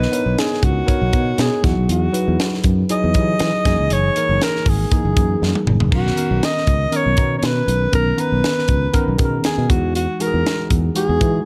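A lightly swung sixteenth-note groove from a tight, up-front funk drum kit with a high-tuned snare and a fill at 5.4 seconds drives this breezy, upbeat slice of polished 1980s jazz-funk pop, where a growly fingered electric bass sits beneath a worn, slightly out-of-tune tine electric piano with subtle chorus voicing Bmaj9, Emaj9 and F#13 chords, while a breathy, whispered alto saxophone with vibrato carries an intimate, jazz-style melody in a small room.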